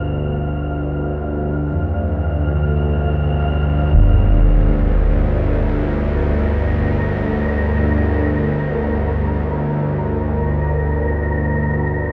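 Dark ambient drone in free time and G minor, desolate and ominous, built on a tense, nasal, string-like bowed drone held low and up front, with a breathy, wind-like tuned noise texture fading in high above it across the full 12.1 seconds over a Gm7 chord. Very quiet bronze gamelan-type bossed gongs sound round, beating arpeggios from 1.7 to 7.4 seconds, and a concert bass drum with a low-pass filter sounds briefly from 3.9 to 4.1 seconds. The dreamy mix is soaked in a lush hall reverb, and the passage is cut from a longer piece.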